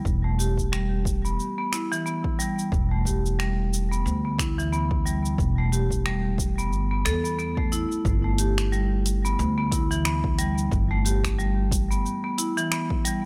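A swung sixteenth-note groove at 90 BPM in 4/4 drives this hypnotic, warm slice of organic downtempo, cut from a longer piece. A punchy, layered electronic kick sits under a produced deep house kit of finger snaps, hi-hat and shaker, all starting at 0.1 seconds. Up front, a woody, thumpy pizzicato upright bass on gut strings moves between E1 and E2, roughened by tube saturation and breathing with sidechain pumping until it drops out at 12.0 seconds. A bright, airy marimba struck with hard mallets spins percussive arpeggios from E3 to A4 through a low-pass filter and analog delay, its filter sweeping across the opening Em7 passage before the harmony shifts to G at 8.1 seconds. The whole piece sits in a small, dry room with a gritty hardware character.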